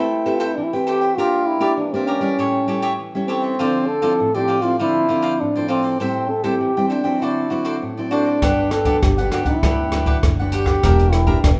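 Set in a moderately reverberant large studio, this playful, joyful samba-choro excerpt in A minor at 99 BPM features a breathy, mellow trombone soloing up front with light vibrato and a whispered, intimate jazz tone over bright, crisp picked cavaquinho and thumb-plucked classical nylon-string guitar, until woody pizzicato upright bass and a dark, smooth jazz drum kit with a boomy kick and rim clicks join at 8.4 seconds.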